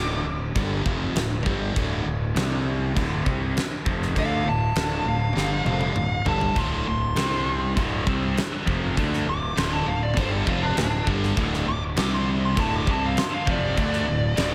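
Powerful and energetic, this hard rock excerpt opens mid-solo, with a dark, smooth lead guitar carrying the melody through overdrive and slapback echo across the whole passage. Beneath it, a bright cranked stack guitar with a phaser and a hollow-bodied, overdriven semi-hollow guitar play picked riffs in the background, while a growly, punchy fuzz bass, fingered and overdriven, anchors the low end. A huge arena drum kit arrives at 0.6 s, up front with a fat snare, punchy kick, bright cymbals, crashes and toms, and plays a fill from 5.4 s. At 6.6 s a double-tracked, high-gain guitar joins the riffing with distortion and slapback echo, thickening the wall of guitars. The harmony rocks between D5 and C5 power chords in a straight 4/4, all set in a lush hall reverb that gives the mix a big arena sound.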